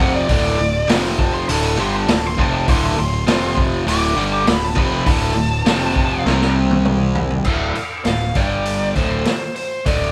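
Blues rock in the power-trio mould with a southern rock streak, this raunchy, driving clip runs at 100 BPM in a straight 4/4 and is cut from a longer piece. A dark, distorted lead guitar carries the melody from the opening, soloing over the first 7.5 seconds in a range from C5 to D6. Beneath it, a bright, double-tracked semi-hollow guitar sits up front with an overdriven, picked riff, while a fuzzy, overdriven picked bass holds down the low end. The vintage acoustic kit enters at 0.3 seconds with a punchy kick, a medium-tuned snare, dark cymbals and a rolled-off top, and a drum fill from 6.3 seconds leads into a new section at 7.5 seconds. The chords move between D5 and F5 power shapes, touching C5 before the change and G5 after it, and the band sounds as if it is playing live together in one room with light reverb.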